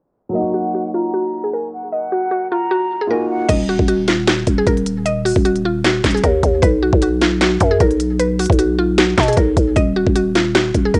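Dry, low-pass-filtered and recorded at home on cassette, this menacing, brooding half-time trap cut opens with a dark, mellow concert grand piano and a breathy, vibrato-laden flute echoing through analog delay, while a woody, round mallet-like synth pluck carries the melody through chorus, tape and delay under a filter sweep. At 3.5 s the piano and flute drop away as a growling, buzzy 808-style bass and an up-front electronic trap kit take over, with a knocking kick, sharp snare, crisp hi-hats, handclaps and crash cymbal coloured by tape, as the pluck carries on until 11.0 s.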